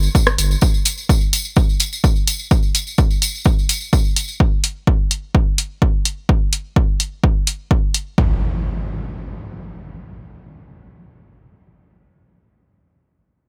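A straight 4/4 pulse from an up-front, tape-warmed electronic kick drum drives this hypnotic, dramatic melodic techno excerpt, cut from a longer piece. A punchy analog drum machine adds hi-hat and rim click, tape-warm and up front, re-recorded in a small room. At the very start a round, deep, dark analog bass with a fast attack and sidechain pumping sounds only briefly, ending by 0.6 s. A jingly acoustic tambourine sits close in the mix, carrying on until 4.4 s. As the drums fall away, an electronic impact arrives at 8.2 s and opens a second section, all wrapped in a digital ambience.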